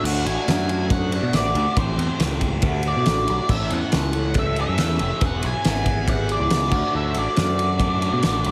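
A small-room ambience frames this short, upbeat cut from a longer indie rock track, carrying a carefree energy in a straight 4/4. An octave-fuzz lead guitar, dark and distorted, picks out the melody with digital delay trailing its lines. Beneath it, a crunchy overdriven guitar plays the riff, bright and double-tracked, colored by a phaser. A growling picked electric bass, direct and amped with overdrive, adds a gritty low end, while a loose acoustic drum kit enters at 0.1 seconds, up front with a punchy kick, fat snare, dark crash and ride cymbals, and a pumping room sound. The chords move from D through Am, back to D, then A and E before returning to D at 6.7 seconds.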